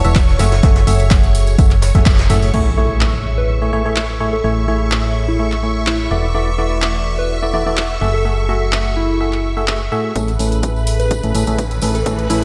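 A biting, percussive FM electric piano riff leads this uplifting, feel-good piano house excerpt at 126 BPM in A major, its chorus, delay and low-pass filter giving it a lively edge, with a filter sweep on it from 10.2 s. Underneath, a round, dark FM bass sits up front, and it pumps with the sidechain along with the keys and a shimmering, vintage string machine. The string machine holds sustained violin chords over a progression of F#m9, Amaj7 and E9sus4. An overdriven analog drum machine supplies crash, handclaps and hi-hat, while a punchy electronic kick, a close, dry tambourine and a very quiet brush kit with a rolled-off top join it at the opening, and the kick and tambourine return for the closing build-up. A background impact and riser arrive at 2.5 s, and from 3.4 s a gentle, keys-like FM synth lead with a sub octave carries the melody through chorus and delay. The mix is dreamy and soaked in a lush hall reverb, with a light swing on the sixteenths.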